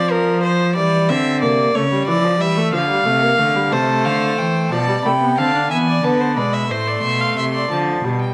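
Moving in a straight 6/8 at 61 dotted-quarter beats per minute, this serious, driving baroque-style fugue for string quartet in D minor, cut from a longer piece, opens with a warm second violin, a distant viola with light vibrato and a rich, up-front cello bass, all bowed with period-style gut strings. At 3.7 s a dark, reedy first violin enters high with the melody, sounding slightly distant, while the second violin drops out at 7.7 s as the harmony moves through minor and half-diminished chords back to D minor. Close, detailed microphones catch the nasal edge of the violins and viola within a moderate recital hall reverb.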